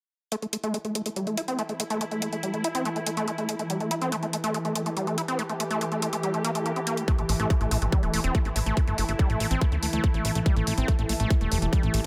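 Lightly reverberant, this alien, intense psychedelic trance excerpt opens with a squelchy, gritty acid bass riff carrying cassette-tape colour, dub echo and a filter sweep, alongside an overdriven electronic hi-hat and a very quiet breathy chorused pad. A warbling, detuned drone with sidechain pumping joins at 1.2 seconds, before an up-front tight kick drum and a punchy, funky analog bass arrive at 7.1 and 7.2 seconds.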